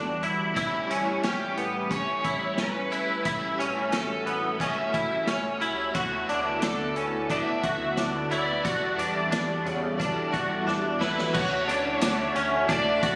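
A bright, twangy clean electric guitar sits up front, picking compressed arpeggios through ensemble chorus and digital delay in this floating, dreamy dream pop excerpt at 89 BPM in D major. Beneath it a swirling, detuned sawtooth pad holds sustained chords through phaser and chorus, while a round sine sub bass hums mellow and deep in the background. An overdriven slide guitar carries the melody from 1.3 seconds, its delay trailing behind, and a double-tracked overdriven guitar adds tremolo-shaded accompaniment further back. The vintage acoustic kit is punchy and mid-forward, with dark cymbals, tambourine and a rolled-off top, and it plays a fill at 10.7 seconds as the harmony moves from Em11 and A7 through D6 toward Dmaj7. A glassy, drifting harmonics texture slips in at 12.2 seconds, and the whole mix is bathed in a moderate shimmer reverb with the soft haze of a phone recording in the room.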